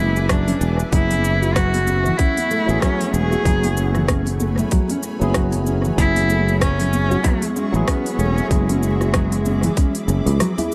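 An echo-heavy, lightly reverberant mix frames this hypnotic, earthy organic downtempo excerpt at 95 BPM with a swung 4/4 feel, where a close, dark bowed cello sings an expressive melody with vibrato and portamento through 12-bit sampler grit and analog delay over a growly fretless bass, a tight overdriven electronic kick, smooth deep house hats with rim click and shaker, very quiet soft-handed congas, a thumb-plucked nylon-string guitar arpeggiating in the background, a clean tine electric piano and a blurred, detuned granular pad pumping behind chords moving from F#m7 through Amaj9/F# to E69.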